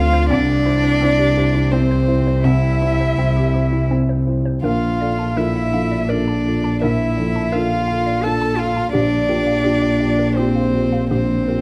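An up-front, woody bowed double bass anchors this reflective, fragile neoclassical piece in 3/4 with a rubato feel, as a rich, intimate violin carries the melody over a close, sul tasto cello second line and a dark, slightly detuned upright piano, while a hollow, bouncy square-wave pluck with chorus and tape echo adds background arpeggios from 0.1 s, the whole passage sitting in a large studio reverb.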